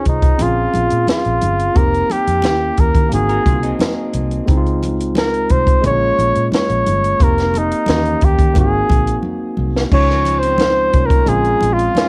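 Silky and smooth, this lush 1970s-style soul clip features an up-front flugelhorn, warm with light vibrato and scooped notes, soloing over a barky, lightly overdriven tine electric piano, a round, foam-muted fingered bass and a compact cocktail kit with a punchy kick, high-tuned snare and dark cymbals. Thick-skinned congas sit in the background, a slightly broken-up guitar riff appears briefly at 3.3 seconds, and after a drum fill at 9.2 seconds a clear trombone section adds stabs from 9.9 seconds. The home cassette recording carries little reverb.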